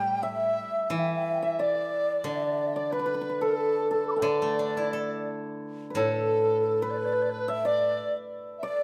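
A hollow, pure-toned bamboo xiao carries the tongued, vibrato-laden melody in this festive, pastoral Chinese traditional chamber piece in D zhi mode at 89 BPM in 2/4 with a loose, rubato feel, joined on second lines by a shimmering hammered dulcimer and a distant, unsteady large dizi with a buzzing membrane, while a silvery steel-string zither played with fingerpicks rings underneath until 8.0 s, the ensemble set in a moderate recital hall reverb and captured by close, detailed microphones.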